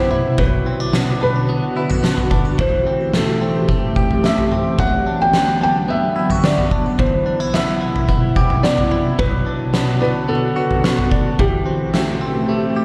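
An oversized, low-tuned acoustic drum kit sits up front in this ethereal, dreamy dream pop excerpt. Its punchy kick, fat snare and toms sound dark and gritty with a saturated edge, as if played in a bright stone room, and the kit comes in at 0.1 s and drops out at 12.1 s. Beneath it, an airy pad holds sustained chords with a slow attack and long release, its detuned sawtooth and triangle layers thickened by a sub octave, ensemble chorus and built-in reverb. A felt-muted upright piano carries the melody with a soft, intimate, boxy tone, its thin felt and audible action noise close at hand, shaded by subtle chorus and delay. A clean, direct-recorded electric guitar picks twangy, compressed arpeggios under the same subtle chorus and delay, while the harmony drifts from Bm through Am7, D69 and Cmaj7 to Bm7 and back to Am7, all soaked in a moderate plate reverb.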